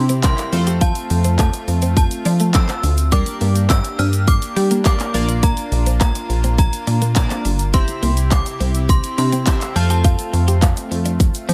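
A ringing FM synth chime opens this dance-pop excerpt at once, its chiming, inharmonic melody sitting high over a soft supersaw pad, a twelve-string electric guitar riff and a chorused synth bass, all sounding from the first moment. The mood is bittersweet yet confident, carried by a straight 4/4 groove from a punchy, layered electronic pop kit of kick, hi-hat, handclaps and shaker that sits up front alongside the glossy, detuned bass; the kit arrives at 0.1 seconds together with a grainy, very quiet egg shaker. The supersaw's smooth, evolving chords, the bass and a set of bright, retro synth keys entering at 0.2 seconds all pump with sidechain pumping. The clean, twangy guitar stays in the background with analog chorus, while the chime is spread by ensemble chorus and delay. The harmony moves through C, F, Gm and Bb before returning to C and F, all washed in a digital ambience.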